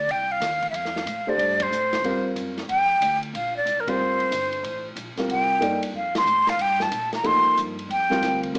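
Heard through a small speaker in a moderate large-studio reverb, this hypnotic, spiritual modal jazz excerpt swings over a single suspended chord, with a breathy, unsteady flute carrying the melody up front with vibrato and a soft attack. A woody pizzicato upright bass and a dark, acoustic drum kit with boomy kick, smooth dark cymbals and a rolled-off top sit beneath. A clear, natural grand piano joins at 1.3 seconds, and the band strikes accents at 1.6, 3.8 and 6.1 seconds.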